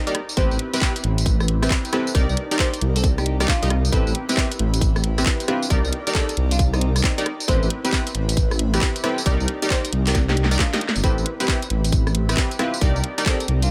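A dry, close-sounding mix opens this excerpt of skippy, late-night two-step UK garage, with the tuning sitting slightly below standard pitch. A deep, rumbling detuned saw bass sits up front from 0.4 s, its beating unison tone dark and sustained, joined by a tight, layered electronic kick re-recorded in a small room. The garage kit, also up front, brings a cracking snare, warm hats, handclaps, rim clicks and tambourine with a pronounced shuffle, and a drum fill arrives at 10.1 s. Punchy, detuned chord stabs with a sub octave and a filter pluck alternate between Am7 and Cm7, their decaying hits thickened by chorus and a dub echo. In the background, a bright, fingerpicked flamenco guitar carries the melody with audible finger squeaks and a delay, while an airy, breathy pad with a noise layer holds sustained chords, shimmering through chorus and phaser and pumping under sidechain compression.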